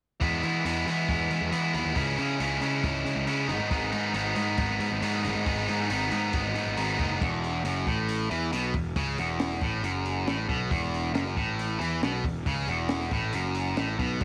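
A bright, overdriven electric guitar sits up front throughout, picking out a riff that spans from E2 to E4 over a straight 4/4 pulse at 137 BPM. This short indie rock passage in E major feels carefree yet wistful, moving from E through C#m and G#m before settling on an E5 chord at 7.2 seconds, where a second section begins. Beneath the guitar, a picked electric bass growls with round, punchy fuzz and a dark, direct-and-amped tone, reaching down to E1. A compact cocktail drum kit fills out the groove with a punchy kick, a high-tuned snare, hi-hat and crash cymbal, its sound smooth and rolled-off at the top. Light reverb and small-room ambience give the whole piece an intimate, close-quartered feel, as though cut from a longer performance.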